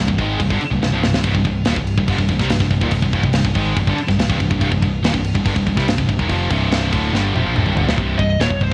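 Heavy and relentless, this short heavy metal clip from a longer piece drives along at 142 BPM in a straight 4/4, rooted on C minor. Three distorted guitars stack the riff in the background: a double-tracked, overdriven guitar, a bright high-gain guitar, and a scooped high-gain guitar. All three sit in a gritty cassette-tape haze. Beneath them a picked electric bass adds a growly low end. Up front, a tight metal drum kit with a medium-tuned snare and rolled-off top works crash, kick, snare and toms, with fills at 0.8 and 7.1 seconds. At 8.2 seconds a high-gain lead guitar steps forward with a brief melody, all set in a light reverb that suggests a home recording on cassette.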